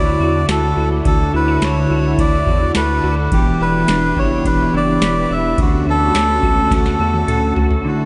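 A booming analog drum machine enters at 0.5 s with a straight 4/4 pulse of deep kick, crisp snare, ride cymbal and tambourine, rolling into a drum fill from 6.7 s, while a round, square-and-sine analog bass sits underneath. In this blissful, ethereal dream pop fragment cut from a longer piece, a vintage organ-like ensemble string pad holds soft, evolving chords from Dadd9 through Em7 to Dmaj7, and a dark, clean semi-hollow electric guitar fingers arpeggios through chorus and delay. Up front, a reedy, breathy melodica carries the delayed melody, and the whole mix is soaked in a huge ambient reverb that leaves it hazy and dim at the top.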